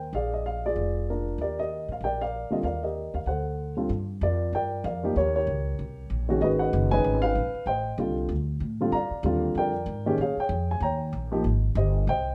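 A dark, mellow baby grand piano with audible action noise carries the melody up front in this swinging jazz piano trio excerpt at 191 BPM in Eb major, joined throughout by a woody, growly pizzicato upright bass, with a moderate large-studio reverb around them as the harmony moves from Bb7 and Ebmaj7 into a passage that opens on Gm7 at 3.9 seconds and closes on Abmaj7.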